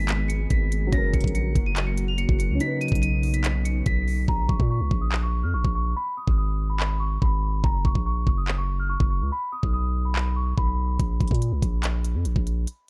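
A bell-like celesta melody, passed through a low-pass filter and delay, opens this dark, hard-hitting half-time trap and hip hop excerpt over an intimate baby grand piano and a glassy, warbling FM pad with ensemble chorus, both of which stop at 4.3 seconds, while a deep, long 808-style bass and an up-front trap kit with knocking kick, crisp hi-hats and handclaps carry on, the hats muted from 4.3 to 11.0 seconds as a filter sweep runs to the end inside a shadowy digital ambience.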